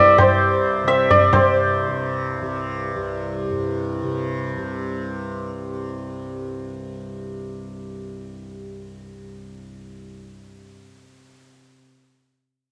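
Devotional and radiant, this brief fragment of Hindustani classical music at 132 BPM sets a bright, hammered santur melody up front over a softly plucked, buzzing tanpura drone that sounds from 0.0 to 11.7 seconds, with low-tuned tabla strokes of short ring appearing only from 0.2 to 1.5 seconds, the santur and tanpura both carrying a cassette-tape grain in a lightly reverberant home recording.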